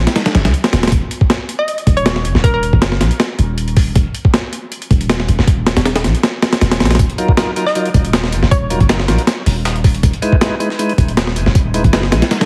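A gritty, thumpy breakbeat kit sits up front in this raw, atmospheric drum and bass excerpt at 158 BPM in Eb minor, joined from the start by a deep, mellow 808-style bass with long sustained notes. A hollow, detuned square pluck with chorus and dub echo flickers in briefly around 1.6 seconds and again near 7.7 seconds. From about 7.0 seconds a second, tape-warm, high-passed breakbeat layer with tambourine appears in the background, and a reedy, lightly overdriven tonewheel organ adds stabs through a slow rotary speaker, all under a heavily compressed radio sound with vinyl crackle and light digital ambience.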